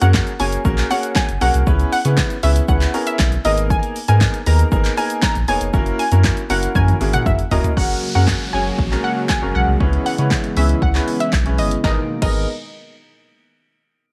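Punchy and up front in a digital ambience, this energetic, bittersweet dance-pop excerpt in G# minor at 118 BPM opens on a drop, with a round, warbling analog pluck melody with chorus and slapback echo over clear concert grand piano chords, a deep sub bass with octave, both pumping, and a punchy analog drum machine of kick, snare, claps, hats, shaker, toms and crash, whose fill leads at 7.8 seconds into a section where a smooth, detuned analog pad and an electronic downlifter join as the chords cycle through F#add9, C#m7 and G#madd9.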